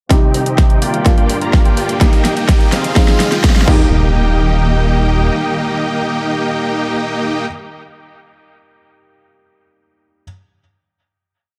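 A dark, warm production sits in a moderate recital-hall reverb with a digital sheen, framing a short, complete piece of uplifting, triumphant festival progressive house in Eb major at 126 BPM. An overdriven electronic kick drives a four-on-the-floor pulse up front, joined by a big-room kit with a huge snare, programmed hats and crash through a drum fill that runs until 3.8 seconds. A dense, compressed supersaw carries the riff in huge, detuned dotted-rhythm chords, filter-swept during the build and pumping against the kick with dub echo. A fat, nasal analog bass plays off-beat lines with a saturated filter pluck from 0.3 seconds, while a very quiet riser and impact mark the turn into the final hit. In the background, a soft felt-muted upright piano with audible action noise holds chords with syncopated pushes through 10.2 seconds, over a veiled con sordino string pad moving through Cm, Gm7, Eb and Fm7.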